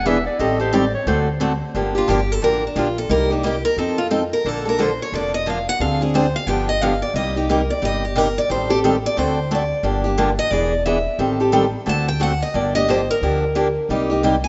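A fiery, swinging jazz manouche groove in 4/4 at 178 BPM, with eighth notes swung at 61%, this short cut from a longer piece sits in G minor. A bright, distant clarinet opens with a brief, forceful solo line full of vibrato, ending at 1.2 seconds. Underneath, a dark, woody upright bass with a thumpy gut-string pizzicato runs through the whole passage, while a boxy, parlour-style picked steel-string guitar holds down the accompaniment up front, finger squeaks and all. From 2.0 seconds a second picked steel-string guitar, with a warm concert tone, takes over the solo melody and carries it through changes built around Gm7, Cm7, Am7b5 and D7. A moderate, lush hall reverb surrounds the rough home-demo mix, whose top end is rolled off above 7.8 kHz.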